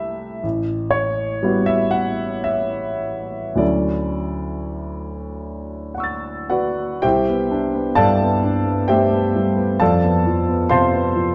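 Serene and luminous, this brief impressionist classical solo piano fragment drifts in a rubato 3/4 at 51-67 BPM, its smooth, vintage-toned grand piano sitting up front with long sustain across a range from A1 to A6, moving through Asus2 and Dmaj9 in D major before shifting to Cmaj9 and F in C major at 7.0 s, framed by a moderate recital hall reverb in a dark, warm production.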